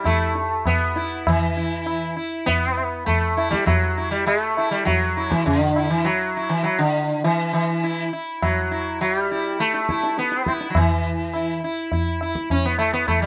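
A buzzing, plectrum-plucked sitar sits up front, its sympathetic strings shimmering around a melody that moves between D3 and E4 in this solemn, introspective passage of Hindustani classical music cut from a longer performance. A high-tuned tabla with a short ring and a small-room character joins at 0.1 s, a touch lower in the balance. The pace gradually speeds up throughout, and the close, dry recording captures fine detail in both instruments.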